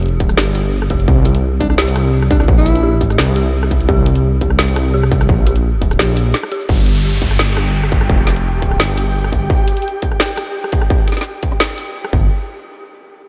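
A deep, rumbling detuned saw bass sits up front in this tense, cinematic half-time drum and bass excerpt, driven by a distorted electronic kick and an overdriven kit of woody snare, bright hats, rim clicks, shaker and crash. An eerie, inharmonic FM synth bell plays chorused arpeggios with tape echo in the background until the section changes at 6.7 seconds, and early on a mellow alto saxophone offers a brief jazz-style phrase with vibrato and scooped notes. A downlifter then enters and a grainy, flickering texture glimmers with its own reverb until the end, with the bass returning for one short final note at 12.1 seconds.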